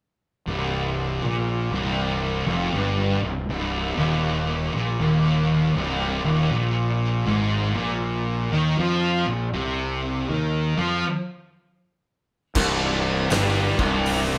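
Two thick, fuzz-drenched picked guitars, one up front and one darker in the background, open at 0.5 s over a growly, overdriven fingered bass in this ominous, sludgy stoner and doom metal passage cut from a longer piece, grinding through a C minor riff that moves to Bb5 at a swung 80 BPM in 4/4. After a stop at 11.0 s, a bright, double-tracked tight distorted guitar and an oversized low-tuned acoustic kit with a fat snare, punchy kick and dark cymbals crash in together at 12.6 s on C5, all soaked in a moderate stone room reverb that makes it feel like a band playing live in one room.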